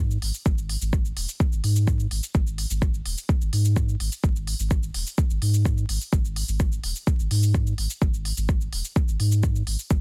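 Nocturnal and deep, this dub techno excerpt moves at 127 BPM in a straight 4/4. A warm, round sine sub bass opens the track at 0.0 seconds, sitting up front with a fast attack and sustained, mellow tone between D#1 and G#2, breathing with sidechain pumping. Smooth, layered electronic shaker and hi-hat arrive at 0.1 seconds, set lower in the mix, and a deep electronic kick drum lands up front at 0.5 seconds. The sound is dry, with little reverb, and the dense, heavily limited modern master carries a layer of vinyl crackle. It is cut from a longer piece, holding a single section throughout its ten seconds.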